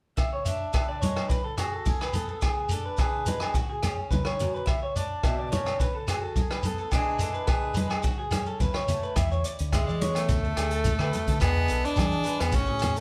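Highlife guitar band with a sunny feel: a boxy, picked swing-style acoustic guitar and twangy, slightly broken-up arpeggios from an electric guitar through a small old amp ride over a vintage drum kit with a punchy kick, hi-hat and rim click, ringing agogo bells in the background, thick-skinned congas played with hard hands and a grainy shekere, in a live room with moderate studio reverb, until a round, dark, deep dub fingered electric bass enters at 9.2 seconds and an edgy tenor saxophone with light vibrato takes the solo melody up front at 9.7 seconds.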